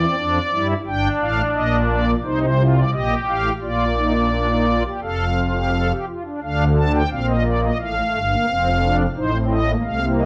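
Classical baroque-style three-part fugue in B-flat major at 87 BPM, contemplative and solemn, played alone on a pipe organ whose shimmering, soft celeste string stops sit up front in a romantic voicing, bathed in a stone room's reverb and the warbling pitch drift of worn cassette tape in this brief excerpt cut from a longer piece.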